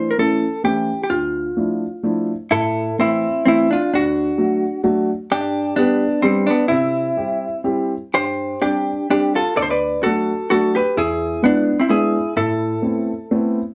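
Nostalgic and whirling, this musette waltz in a lilting, rubato three sways as a clean, compressed hollow-body electric jazz guitar carries the melody up front with a slapback echo, over a woody, boxy upright piano accompaniment whose action noise and long sustain sit intimately in a small, dark-toned room.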